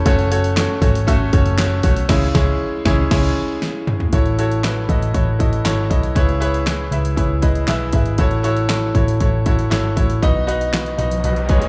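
Opening on a bright baby grand piano with audible action noise and slapback echo, over a dark, foam-muted picked electric bass and a punchy, layered pop drum kit with fat snare, handclaps and toms, this dramatic, bittersweet piano-driven pop excerpt at 118 BPM moves from F#m through C#m7 and A6 to B, with a band accent and a piano and drum fill before 4.1 seconds, club reverb from a live PA, and a faint electronic riser entering at 11.0 seconds.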